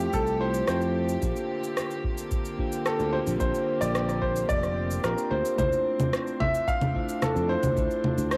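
An up-front, brilliant grand piano with long sustain carries the melody through tape echo and shimmer reverb in this wistful 110 BPM sunset chillout excerpt, over a bell-like tine electric piano heard through built-in speakers, a distant chamber string section with light vibrato and a reedy gut-string tone holding sustained chords, a growly, punchy fretless bass with subtle chorus, and layered electronic cabasa, rim click and congas joined by a deep analog kick from 0.1 s, as the harmony moves through Fmaj9, Bb69 and Dm9 in a home recording on cassette.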